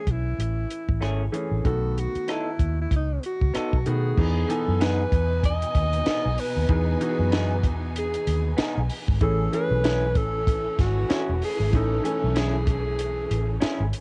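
A breathy alto saxophone carries the melody from the opening moment, up front with a pop-style vibrato, over clear grand piano chords in this lush, romantic 1970s-style soul fragment cut from a longer piece. Almost at once a compact cocktail drum kit and a dark, round, foam-muted electric bass settle into a gently swung 16th-note feel. The drums sound dry and punchy, with dark cymbals, rim clicks and a high-tuned snare, and the amped bass sits as far forward as the kit. At 1.0 seconds a bright, twangy electric guitar joins with a picked riff through a small old amp, slightly broken-up and lo-fi. At 4.2 seconds a warm studio string section enters with close, expressive, soft-attack bowed chords, as the harmony moves from Amaj7 and B7 to Emaj7. The saxophone, piano, drums, guitar and strings carry a cassette-tape colour, and a small room ambience gives the recording a homemade intimacy.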